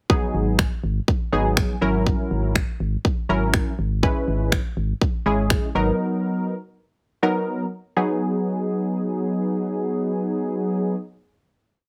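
Confident and energetic, this short dance-pop piece in G# minor at 122 BPM sets a funky, detuned sawtooth polysynth comp with chorus and sidechain pumping over a punchy four-on-the-floor kit of kick and finger snaps and a hollow, dark, organ-like FM bass on the off-beats, with the drums and bass dropping out near 5.6 and 5.9 seconds so the comp carries the progression alone into a final G#m7 chord at 8.0 seconds, all in a heavily compressed radio sound with light reverb.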